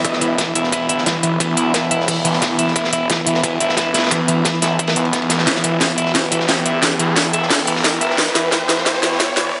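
A dark, tense build-up of technical drum and bass opens at once, with a deep, moody ambient pad holding sustained chords under sidechain pumping, chorus and its own built-in reverb while a bright, twangy twelve-string electric guitar picks clean arpeggios through a low-pass filter and dub echo. Underneath, a snarling sawtooth bass growls low, distorted and compressed, with a resonant moving notch and a high-pass filter, pumping against the beat. Up front, a layered electronic kit drives the groove with a cracking snare and crisp, filtered hats, backed by a very quiet tight electronic kick, while a saturated, gritty acoustic breakbeat kit with dark cymbals and a rolled-off top sits in the background from 0.1 seconds. A riser climbs behind everything across the full passage, and a very quiet, airy, breathy pad adds a mellow, soft haze up high. A drum fill from 5.5 seconds tightens the aggressive tension as the section builds, all set in a lush hall reverb.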